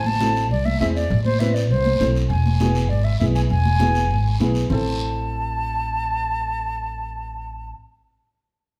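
A fiery, driving cumbia groove at 200 BPM in straight 4/4 is pushed along by bright, high-tuned congas struck with hard hands and a raspy guiro heard in the distance, both dropping out at 4.8 s. Up front, a growly, thumpy pizzicato upright bass anchors the A harmonic minor harmony as it moves between Am and E, while a dark, woody upright piano with short sustain fills in beneath. An airy silver concert flute carries the melody with expressive vibrato and a soft attack, bathed in plate reverb, and the band sits back in a wet studio room in this excerpt cut from a longer piece.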